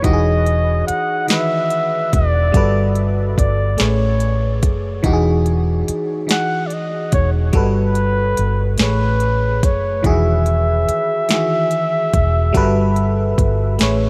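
A breathy flugelhorn carries the melody with light vibrato and scooped notes over a glassy, bell-like FM electric piano with chorus, opening this sensual, slow six-eight R&B excerpt at 48 BPM in E major as chords of Emaj9, Gmaj9 and Amaj9 cycle beneath. A round, foam-muted fingered electric bass enters at 0.1 seconds, while an electronic drum kit with a soft kick, sharp snare, crisp hats and overdrive keeps the sway. The flugelhorn's delay and a light reverb give the sound a soft glow, and the kick falls silent at 13.8 seconds.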